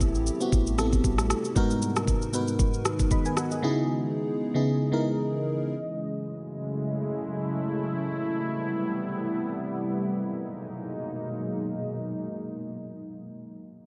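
A knocking electronic kick, rim click and shaker set a swung 116 BPM amapiano groove in G# phrygian with a deep sine sub bass that drops out at 1.3 s and drums that stop at 3.6 s, while a dreamy, chorused FM electric piano with a soft pad layer plays mellow accompaniment over Am9, G#m9 and C#m9 until 5.7 s, leaving a moody, detuned sawtooth ambient pad with sidechain pumping and its own reverb to sustain the hypnotic chords through a lush hall until 13.1 s in this cut from a longer piece.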